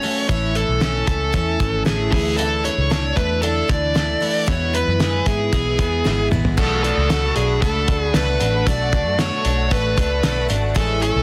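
A dark, smooth lead guitar carries the melody up front, its overdriven tone trailed by digital delay, over a breezy, youthful jangly indie pop groove at 115 BPM in a straight 4/4. Beneath it, a shimmering, octave-doubled twelve-string acoustic guitar with audible finger squeak and a bright, twangy twelve-string electric playing arpeggios through spring reverb ring over chords moving from A through Dsus2 and E. A cloth-damped, thuddy drum kit with a fat snare and muffled, dark cymbals drives the groove from the start, joined at 0.3 seconds by a round, foam-muted vintage bass, and after a drum fill a lush, distant string section with vibrato enters on Bm7 at 6.6 seconds in this dense, heavily limited excerpt.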